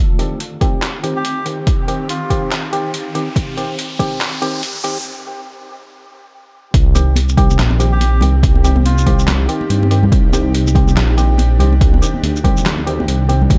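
This excerpt of dark, meditative deep dubstep is anchored by a deep, rumbling detuned saw bass that arrives up front at the drop at 6.7 seconds, saturated and beating beneath a half-time 142 BPM groove in C minor with swung 16ths. Before that, a build-up gathers from the start: a cloudy, evolving granular pad sits in the background with its own reverb, hollow organ-like stabs with chorus and dub echo pass through a filter sweep, and an electronic riser climbs from 1.8 to 5.1 seconds ahead of a short break. A punchy, overdriven electronic kick pushes forward during the build and returns for the drop, while a gritty, pitched-down sampler-style kit of snare, hi-hat, shaker and handclaps carries a compressed small-room character throughout. A reedy, breathy melodica floats in briefly twice with dub echo, and ringing acoustic congas join in the background once the drop lands. The result is a murky, hypnotic space where heavy low end meets mellow, hazy texture.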